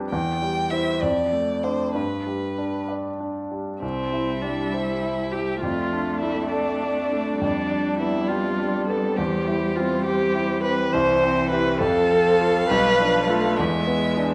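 A bright grand piano with audible action noise opens this urgent, stormy excerpt from a quick classical-period piano quartet movement in C major, a rubato 6/8 at 67 dotted-quarter beats per minute, joined at 0.1 seconds by a rich, vibrato-laden solo violin melody, with a smooth, up-front viola and a focused, background cello entering together at 3.8 seconds as the harmony moves toward a tense E7, all set in a reverberant recital hall.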